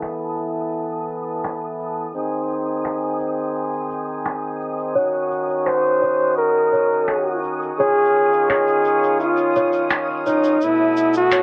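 A close-miked flugelhorn carries the melody, sitting up front with vibrato and scooped notes in a warm, pop-style solo that arrives at 5.7 seconds. This hopeful folktronica fragment, cut from a longer piece, rests on a mellow accordion holding sustained chords, its reedy, full tone placed close in a plate reverb. Finger snaps and shaker with brushes supply an acoustic pulse, dark and smooth with a rolled-off top. A worn celesta enters at 5.0 seconds as a second line, bell-like and delicate, slightly out of tune, with echoing delay. Far in the background, a grainy, flickering texture hovers with a slow attack and long release, while the whole mix is bathed in a wet small-room reverb, vinyl crackle, a low-pass filter and a filter sweep that runs throughout.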